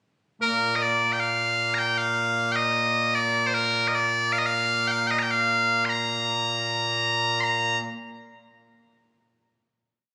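A straight 2/4 pulse carries this short, complete piece of ceremonial, proud Scottish pipe music, where solo bagpipes, bright, piercing and continuous, sit up front from 0.4 to 7.8 seconds, moving through a pickup bar into an ornamented modal melody before a final note lingers in a roomy, compressed phone recording washed in stage and club reverb.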